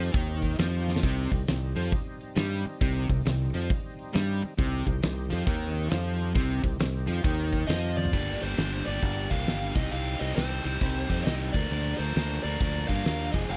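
A swung 4/4 groove at 135 BPM drives this smoky, brooding blues rock and southern rock excerpt in C minor, with a huge arena drum kit's fat snare and punchy kick up front beside a bright, growly fingered bass and a double-tracked, overdriven guitar riff, while a gritty tonewheel organ holds thick sustained chords through a slow rotary speaker in the background until 8.1 seconds and a dark, smooth lead guitar melody enters at 7.7 seconds, in a dry, close 1970s-style studio recording.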